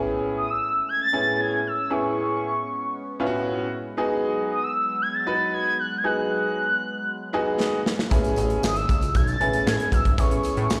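A clear, slightly worn grand piano with a slapback echo and a shimmering, chorused pulse-width pad open this slick, danceable piece of early-eighties boogie funk at 116 BPM in 4/4. The harmony moves from Amaj9 to G#m7 and back to Amaj9. Almost at once a round, horn-like synth lead takes the melody high above, its soft attack, vibrato and portamento carried by chorus and slapback echo. A drum fill at 7.6 seconds brings in a modern studio kit with a tight kick, a medium-tuned snare, hi-hat and handclaps. At 8.1 seconds a glossy, retro chorused synth bass with a fast, plucky attack joins, along with a jingly tambourine set far back in a large room. The whole excerpt sounds like a live gig heard through the venue's PA, with light recital-hall reverb, and it is cut from a longer piece.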